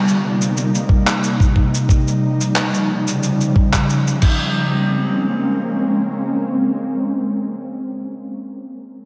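A mellow, ethereal pad of detuned sawtooth and triangle unison with ensemble chorus opens this wistful, smooth sunset chillout fragment on sustained Cm7, Eb9 and Bbm9 chords, joined at 0.1 seconds by a dusty, gritty soul kit of crash cymbal, handclaps and shaker and at 0.9 seconds by a thumpy, up-front kick, both compressed and re-recorded in a small room, before the drums stop at 4.4 seconds and the pad carries on alone through a lush hall reverb that gives the whole an arena-sized sound.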